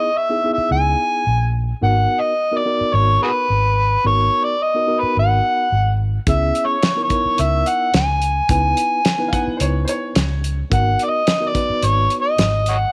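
An overdriven, gritty harmonica carries the melody up front from the start, with light vibrato and tongue slaps in a jazz-style solo, over a mellow, reedy electric piano with tremolo and a dark, round, foam-muted fingered bass that joins at 0.6 seconds. This smoky, soulful straight-eighth soul blues in G# minor moves at 108 BPM in 4/4, shifting between C#m7 and G#m7, and a soul drum kit with a fat snare, tight kick and hi-hat and a rolled-off top enters at 6.3 seconds. A clear, woody upright piano with audible action noise adds a brief second line around 9.3 seconds, all set in a light small-room reverb in this short cut from a longer piece.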